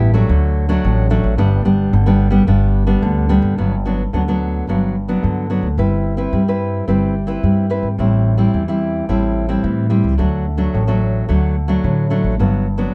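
A fingerpicked nylon-string guitar with audible finger squeak provides accompaniment in this lively, festive samba and choro fragment at 109 BPM in G major, sitting up front beside a woody, growly pizzicato upright bass, both playing throughout the 12.9 seconds under light reverb and a dark production as the harmony moves from D and G into Gmaj7, Cmaj7/G, Am7 and D before settling on Gmaj7.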